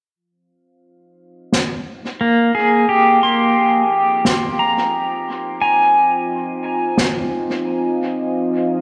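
A deep, detuned sawtooth pad fades in and holds a sustained Fm7 chord under chorus and its own reverb, setting a meditative, moody ambient dub groove at 88 BPM in F minor with a swung sixteenth feel. A distant, roomy acoustic snare enters at 1.5 seconds, thrown into dub echo, and at 2.2 seconds an up-front, clean electric pedal steel guitar joins with fingerpicked slide arpeggios, volume swells, compression, a low-pass filter and its own dub echo. The whole short cut sits in a wet echo chamber, with the pedal steel standing out most clearly.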